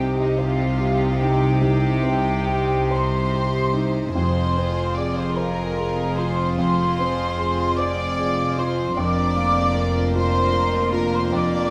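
Longing and moving, this rubato cinematic film-score excerpt in 6/8 drifts through a slow minor-key progression, with a violin section carrying the melody in soft, sul tasto bowing while a bright, airy flute ensemble with vibrato floats a second line above and a quieter violin section adds another. Dark violas, a polished grand piano and a rich cello section fill the background, with a dark double bass section anchoring the low end, all playing together from 0.0 to 11.7 seconds. Close, detailed microphones on a moderate scoring stage give the sound intimacy and bloom, and vinyl crackle colours the sound.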